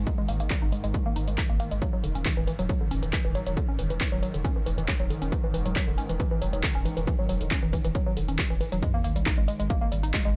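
Driving peak-time techno, this short cut from a longer piece feels relentless, pushed along by an overdriven, layered electronic kick that sits up front. A punchy analog drum machine adds handclaps, hi-hat and shaker with its own overdrive, and its hats and percussion pump with sidechain compression. Underneath, a deep, thick saturated sub bass holds sustained notes through a low-pass filter, while a swarming, detuned drone hangs in the background, tense and evolving in its own built-in reverb. The riff is a woody, wave-folded pluck with a warbling, vintage character, given chorus, tube saturation and delay, and the harmony moves from G#5 to Emaj9 at 1.8 seconds. At 8.8 seconds the music returns to G#5 as a very quiet electronic sub drop lands with an impact, and the dry mix keeps the whole thing close and forceful.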